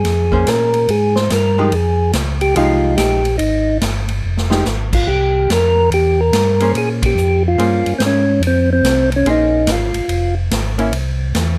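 Soul jazz organ trio in a soulful, bluesy swing, cut from a longer piece, with a percussive tonewheel organ carrying the melody through slow rotary speaker while a second organ, round and lightly overdriven with chorus vibrato, holds down the bass line. A picked hollow-body archtop guitar, dark and clean, comps from 0.3 seconds, and an acoustic big-band drum kit with a punchy kick and natural big-room character swings underneath, marked by a drum fill at 4.2 seconds and a band accent at 7.0 seconds. The organs sit up front in a dry mix as the harmony moves through minor-ninth, dominant and minor chords.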